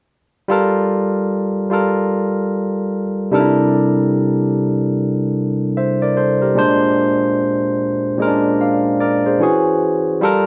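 A 16th-note swing at 74 BPM in 4/4 carries this soulful, introspective R&B fragment in G dorian, where a bright, barky tine electric piano takes the solo from 0.5 to 10.5 seconds, spanning Bb2 to F5 through Gm9, C13, Bb9 and E69 chords, its clean, up-front tone set in a wet studio reverb of a live room.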